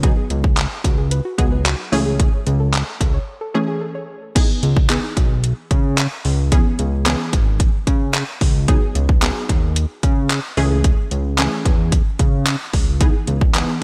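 A punchy, up-front electronic pop drum kit drives this bittersweet dance-pop excerpt, its layered kit of kick, metallic hi-hats, handclaps and crash cymbal bathed in gated reverb. Beneath it, a fat analog bass sits up front, sawtooth-based and detuned, mellow yet thick, with a filter sweep and sidechain pumping. A lush, detuned unison pluck carries the accompaniment throughout, full-bodied and wave-folded, with a subtle chorus and the same pumping motion. A soft, round, dark pluck plays arpeggios through a digital delay and chorus until 4.1 seconds, just after a short break begins at 3.3 seconds, and a crisp, very quiet group handclap joins at 4.9 seconds. The harmony moves through lush seventh chords such as G#m7/C#, Amaj7/C# and Emaj7, all set in a bright 1980s-style digital production with light reverb.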